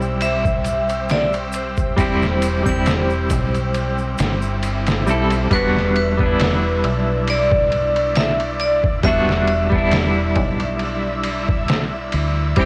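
This dark, hypnotic trip hop fragment, cut from a longer piece, has the hazy, lightly reverberant sound of a home cassette recording. A bright, metallic vibraphone struck with hard mallets carries the melody, its ringing tone shimmering with a slow motor vibrato and trailed by tape echo. Beneath it, a clean, picked semi-hollow electric guitar adds hollow-bodied accompaniment through tremolo and tape echo, while a string machine voiced as cellos holds mellow, sawtooth-edged sustained chords with a slow attack, sub octave and ensemble chorus. A deep dub fingered bass, round and punchy, anchors the low end, and an overdriven, sampler-style drum kit sits up front with a thumpy kick, a medium-tuned snare and ride cymbal, all compressed, pitched down and muffled. A saturated tube shaker and triangle sit in the background until 5.5 seconds, just after a faint electronic swell rises from 4.3 seconds, as the harmony moves from C to Em7.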